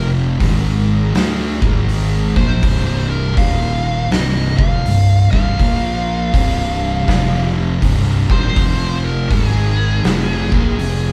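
An oversized, low-tuned acoustic drum kit sits up front in this ominous, heavy stoner and doom metal excerpt, its punchy kick, medium-tuned snare and hi-hat sounding saturated and gritty from their entry at 0.4 s. Beneath it, a growly fingered electric bass, played direct and amped with overdrive, carries the low end with a bright fuzz. Two thick fuzz guitars play the riff, dark and distorted yet set in the background. Above them a compressed lead guitar with a warm tone, shaped by wah and distortion, carries the melody, while a very quiet vintage string machine voicing violas holds evolving sawtooth chords with a soft attack, long release and ensemble chorus. The swung 4/4 groove moves with weight, and the band plays live together in one small room with moderate reverb.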